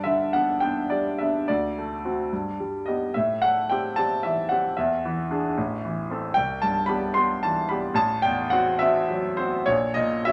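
A clear, smooth grand piano with a vintage tone and short sustain sits up front, ranging from A1 to C6 in this brief romantic character piece for solo piano, cut from a longer work. In G major and 6/8 at about 73 BPM with uneven, rubato beats, the passionate, bittersweet phrase moves from G through D7, Am7, E7 and Cmaj7 to a half-diminished chord over A, ending at 9.7 seconds on an unsettled, rootless F# harmony over A#. A moderate large-studio reverb surrounds the piano, and the top end rolls off around 10.4 kHz.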